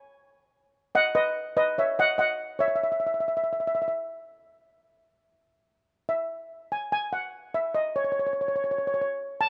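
Calypso at 145 BPM in a straight 4/4, sunny and festive, this short excerpt features a lone lead steel pan played up front with soft rubber sticks, its mellow, shimmering tone moving between B4 and A5. The harmony shifts from C#sus24 to B, then leaves the chord unstated from 2.8 seconds as the piece passes through three brief sections. Light reverb and a small-room ambience frame the rough home-demo sound, whose dull top end rolls off above 10.4 kHz.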